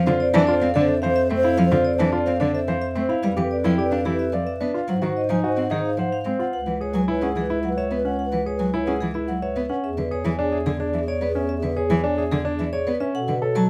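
A lilting three-beat pulse with a straight feel drives this hypnotic, bright stretch of minimalist pattern music, cut from a longer piece. The vibraphone, struck with medium hard mallets, carries the melody with a metallic, ringing tone and a slow motor vibrato, set in a boxy small-room sound. Beneath it, an airy, hollow alto flute traces a soft-edged second line with gentle vibrato, while a single bowed cello, woody and up front, supplies a close, vibrato-rich accompaniment. A mellow bass clarinet anchors the low end, and a clear grand piano weaves arpeggios throughout, its intimate sound revealing audible action noise. The harmony moves through seventh chords, and at 6.5 seconds the music passes into a new section that shifts toward C#m7 and E7, all captured with light reverb and detailed close microphones.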